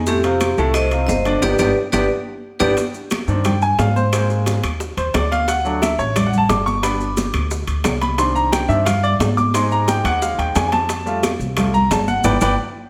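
A large studio's moderate reverb surrounds this fiery, danceable salsa in C minor at 177 BPM, cut from a longer piece. A metallic, hard-mallet vibraphone carries the melody up front until 2.7 s, over a brilliant grand piano with audible action noise and long sustain, a dark, thumpy gut-string upright bass, and percussion from thick-skinned high-tuned congas, round low-tuned bongos, ringing metal-shell timbales, woody claves and grainy maracas. After band accents and a drum fill, the piano takes a solo from 2.8 s over chords moving through Cmadd9, Abadd9, D and G, closing on a final band accent at 12.2 s.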